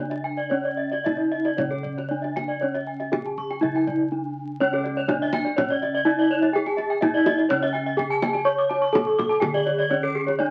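Brilliant and shimmering, this Balinese gamelan fragment in C# pelog moves at 111-124 BPM, with an up-front bronze metallophone carrying the melody under a wooden mallet, a close, dry second metallophone and a bright, airy horn-mallet metallophone spinning arpeggios, soft, round bossed gongs holding the bass, and a tight kendang played with hard hands, all heard through a moderate club reverb and the crackle of a very old 78 rpm record, with a brief break from 3.9 to 4.6 seconds.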